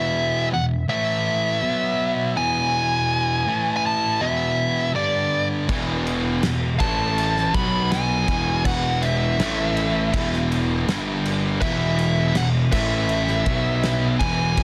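Quiet-loud alternative rock at 81 BPM in a straight 4/4, restless and cathartic, cut from a longer piece and circling power chords on E, A, B and G. A dark, smooth lead guitar with overdrive and tape echo carries the melody up front from the start, over a thick, bright fuzz guitar riff, until at 5.7 seconds a background overdriven guitar, a growly fuzz picked bass and a loose indie drum kit with a punchy kick, medium-tuned snare, dark crash cymbals and a pumping room sound join in. The mix sits in light reverb under a dense, heavily limited modern master.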